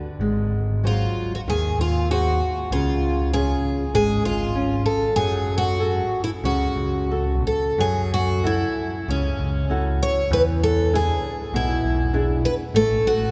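A long cathedral reverb fills this recording, made in a church or concert hall, and lends the short excerpt from a longer piece a vast, hanging ambience. It is a mournful, longing fado-style ballad in F# minor and 4/4, moving with a rubato feel somewhere between 87 and 101 BPM. A flamenco guitar opens at 0.0 seconds with fingerpicked accompaniment, its finger squeaks audible. An overdriven, picked electric bass enters at 0.2 seconds, round and punchy, sitting up front in the low register. At 0.9 seconds a picked twelve-string acoustic guitar takes the melody with fresh strings and a shimmering, octave-doubled tone, placed prominently at the front of the mix. The harmony drifts from G#7 and C# through F#madd9, F#m7 and E7 across two statements of the same section before closing on a chordless moment.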